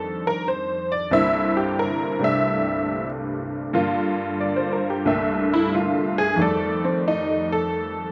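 Warm and relaxed, this short cut from a longer solo jazz piece features a jangly, detuned honky-tonk upright piano playing alone and up front at 91 BPM with a lazy swing in C mixolydian, moving through chords like C13, Gm7 and F13 across a range from C2 to E5, captured by close, detailed microphones with light reverb.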